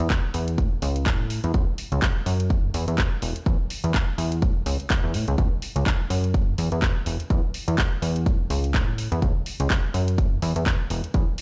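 Played through a big sound system in a bare room with a large studio reverb, this sunny, feel-good filtered disco house cut moves at 125 BPM in 4/4 with a 57% swing on the sixteenths, as a punchy, up-front electronic kick drives a tape-warm house kit of handclaps and sidechain-pumped hi-hats beneath a funky, plucky analog bass of sawtooth and square waves with ring modulation, which pumps against the sidechain and is filter-swept from start to finish.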